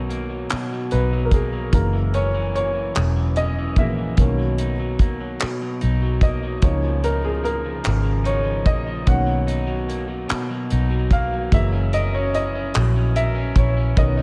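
A baby grand piano with audible action noise takes the lead from the start, playing a solo throughout over a round, foam-muted electric bass and a twangy, slightly broken-up electric guitar with tape echo as a second line, in a slow, sensual six-eight R&B groove cut from a longer piece. A damped 70s drum kit joins at 0.1 seconds with handclaps, hi-hat and a tight kick, its dark, rolled-off top coloured by vintage 12-bit sampler grit and sitting up front beside the bass. Light reverb and small room ambience give the whole an intimate, warm feel as major-seventh and dominant chords drift by.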